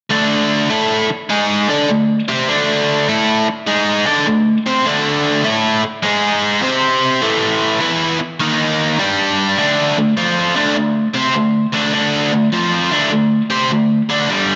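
Swaggering and driving, this short rock passage moves at 102 BPM in 4/4, with a 66% swing on the eighth notes and tuning set to A4 = 439 Hz. A single biting, overdriven electric guitar carries the whole solo from 0.1 to 14.6 seconds, picked and double-tracked, sitting up front with a warm edge and a touch of spring reverb. Its range runs from G2 up to D5 over a chord path of D5, G#5, C5, A5, Eb5 and G5 before returning to D5 as a new section begins at 9.6 seconds. A moderate echo chamber adds a long tail of about 2.1 seconds, and the top end is rolled off above 7.9 kHz, giving the sound a dark, rounded ceiling. The clip is cut from a longer piece.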